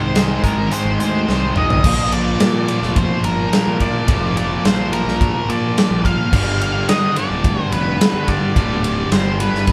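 A straight 4/4 pulse drives this short fragment of quiet-loud alternative rock, cathartic and angsty in mood. The big acoustic drum kit enters at 0.2 seconds, up front with a punchy kick, a medium-tuned snare, hi-hat, ride, crash and toms, and its dark, smooth sound suggests a big room. A drum fill from 1.3 to 1.8 seconds carries the band from an opening Ab chord into a longer stretch built on Bb, which shifts to G at 6.3 seconds. Two bright, distorted electric guitars play picked riffs in the background, one of them compressed. Above them, a dark octave-fuzz lead guitar carries the melody, while a fingered electric bass adds a growly, overdriven fuzz underneath. The whole band sounds like it is playing live together in one room, with light reverb.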